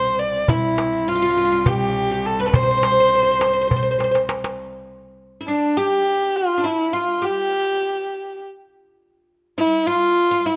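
Turkish makam ensemble music in C makam rast, melancholic and hypnotic, moving in a straight 7/8 at 205 BPM in eighths, where an up-front, dark bowed kamancheh carries the melody with vibrato and portamento over a bright, fretless, plectrum-plucked oud's second line on double strings, while a rich, nasal cello bows a C2 drone until 4.7 seconds and a crisp metal-shell darbuka, close, dry and struck with hard hands, plays a fill from 4.0 to 4.6 seconds, all captured with close, detailed microphones in light reverb.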